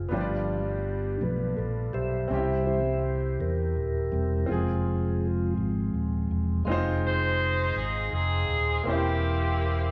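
A mellow, flute-like tonewheel organ with a slow rotary speaker takes the lead from the start, over brilliant grand piano accompaniment and a dark, round fingered electric bass, in this solemn, fervent gospel excerpt in 6/8 at 55 BPM in F harmonic minor, until an edgy, vintage saxophone section with vibrato enters on the melody at 7.1 seconds, all set in the lush reverb of a recital hall.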